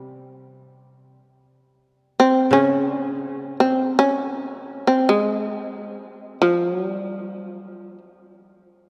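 Unfolding in free time, this short excerpt from a longer piece of Japanese chamber music has a calm, austere mood. A plectrum-plucked, fretless shamisen carries the melody from the start until 8.0 seconds, its percussive, buzzing tone powerful and up front in the mix. Beneath it, a koto played with fingerpicks provides accompaniment in a lower register, its dry, woody sound sitting well behind the shamisen before it stops at 5.7 seconds. The shamisen then continues alone until it falls silent. A wet cathedral reverb with a long decay surrounds the recording, letting the final notes hang in the space until the passage ends at 8.9 seconds.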